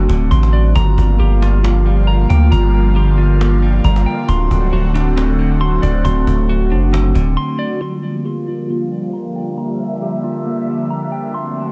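A deep, mellow 808-style bass with a sine-like tone sits up front in this hazy, spacious cloud-rap excerpt in G dorian at 136 BPM with a half-time feel, holding long, decaying notes under chords that move between D7 and Gm7. An airy, breathy pad with a detuned, noise-tinged texture carries sustained chords through chorus, phaser and a low-pass filter, while a clean, compressed electric guitar picks arpeggios softened by filtering and delay, and a snappy acoustic cajon adds a live-room pulse. After a brief break at 7.4 seconds, the bass and cajon stop, leaving the pad and guitar to drift on in a digital ambience until 11.7 seconds.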